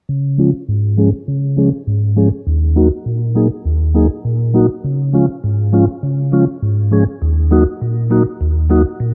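Dancehall at 101 BPM in a straight 4/4, this short excerpt cut from a longer piece carries a summery, sunny mood in D-flat major. A mellow tonewheel organ plays the accompaniment from 0.1 to 9.1 seconds, sitting up front with a soft, flute-like, clean tone and vibrato. Its sound turns through a slow rotary speaker and a low-pass filter, and a filter sweep runs across the organ for the whole passage. The harmony alternates between Db and Ebm, shifting at 2.5 seconds and again at 4.8 and 7.2 seconds. A moderate plate reverb with a 2.8-second decay gives the organ a lingering space.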